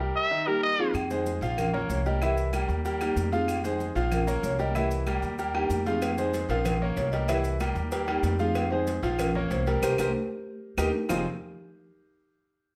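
Salsa in F minor at a fiery, driving 189 BPM in 4/4, cut from a longer piece. A bright, punchy trumpet opens up front at 0.2 seconds with a short burst of scooped, vintage-sounding notes during the opening break, while the soft-mallet marimba enters at 0.5 seconds and carries the melody onward with a round, mellow padauk tone set in plate reverb. Underneath, a brilliant concert grand piano with deep bass supplies the accompaniment over a cycling Fm7, Bbm, C7 and Eb progression, while a thumpy pizzicato upright bass sits up front. In the background, high-tuned congas with hard hands, ringing metal-shell agogo bells and timbales, and claves sound distant in a large room, with grainy maracas adding texture. Drum fills punctuate the groove, tight cowbell and bongos join at 6.0 seconds, and a band accent drives toward the close from 9.8 seconds, all in a light reverb.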